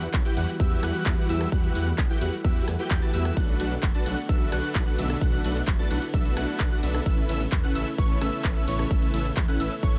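Festival progressive house with an anthemic, powerful mood, cut from a longer piece and moving through Emadd9, Bm7 and Aadd9 chords over a straight 4/4 pulse. An overdriven, punchy electronic kick sits up front beside a big-room kit of handclaps, metallic hi-hats, ride and rim click, while a thick detuned saw bass, a huge compressed supersaw riff with vibrato and delay, and a catchy plucky lead playing high arpeggios with a filter sweep all pump with sidechain. Behind them a warbling, vintage-toned pad holds slow-attack chords with chorus, and a digital ambience surrounds the mix.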